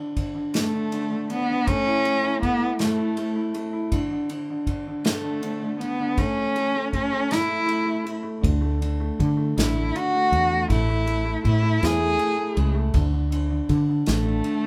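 A slightly detuned, worn upright piano opens this nostalgic, hopeful acoustic folk-pop ballad in A major at 53 BPM in 6/8, joined at once by an airy unplugged drum kit played with bundle sticks and a nasal, expressive bowed cello carrying the melody with vibrato and portamento, before a round, woody fretless electric bass enters up front at 8.4 s, the band sharing one lightly reverberant room as the chords move between D5, A, Dadd9 and Amaj7 in a passage cut from a longer piece.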